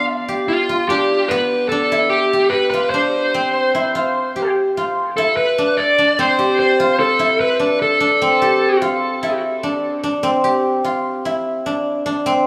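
A straight five-beat metre drives this intricate progressive instrumental excerpt, where a dark, smooth overdriven electric lead guitar carries the picked melody through digital delay while a silvery, ringing guzheng, played with fingerpicks, weaves arpeggios beside it, both placed up front over a G7, Em7 and C progression. The guitar drops out at 8.8 seconds, leaving the guzheng alone until the close at 12.5 seconds. A moderate, lush hall reverb surrounds the rough home-demo mix, with studio ambience audible in the room.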